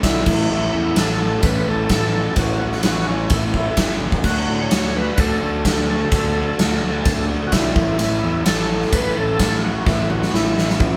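A gritty, overdriven tonewheel organ carries the melody from the start, its key click and percussive attack colored by chorus vibrato and a slow rotary speaker, over a double-tracked semi-hollow guitar riff sitting in the background and a punchy fuzz bass. This swaggering, driving classic rock cut moves at 128 BPM in A major, shifting from A to D and back to A, with a band playing live in one room under light reverb. Up front, a big acoustic rock kit with bright cymbals and a medium-tuned snare pushes things along, throwing in drum fills at 4.0 seconds and again at 9.9 seconds before the excerpt is cut off.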